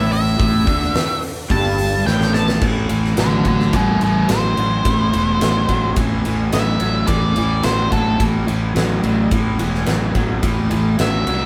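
Heavy and gritty, this blues rock power trio cut with a southern rock streak moves at 108 BPM in a straight 4/4 in A minor, its sound filling a stone room as a band playing live together. A dark octave-fuzz lead guitar opens with a solo over an A5 chord, and a fat-snared, bright-cymbaled arena kit drives a fill from 2.1 seconds into the shift to A minor at 2.6 seconds. A double-tracked, overdriven garage guitar riff and a growly fuzz fingered bass hold the low end beneath the kit's punchy kick.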